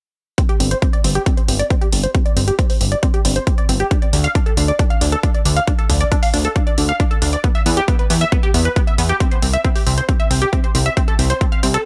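Driving and bittersweet, this uplifting trance excerpt in straight 4/4 time rolls forward from the moment it begins. At 0.4 seconds a tight sequenced synth starts spinning arpeggios from sawtooth and square waves, with a plucky filter, chorus and tape echo softening its detuned edge into a mellow shimmer that pumps against the beat. A punchy, layered electronic kick sits up front, while analog hi-hats add a tape-warmed tick that also breathes with sidechain pumping. The fat analog bass arrives at 0.6 seconds, a thick, wave-folded blend of sawtooth and triangle tones with a filter sweep and sustained, fast-attack notes that also pump. The harmony moves from Gsus4 through bare stretches to E5 and a rootless F/C, all bathed in digital ambience, before the kick drops out at 11.5 seconds.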